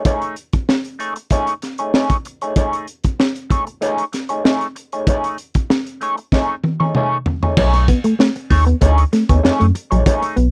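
Funk at 96 BPM in 4/4 with a gritty, dry, close 1970s-style studio sound, this excerpt opens on a semi-hollow electric guitar with wah playing Amaj7#11 accompaniment over a crunchy breakbeat drum kit of saturated, rolled-off character, with dark cymbals, a high-tuned snare and a tight kick. After a drum fill from 6.3 seconds, the harmony moves to B13 at 7.6 seconds as a rubbery square-wave bass enters up front with a bouncy filter pluck and moving notch. Alongside it, a mellow, clean electric guitar adds a low riff.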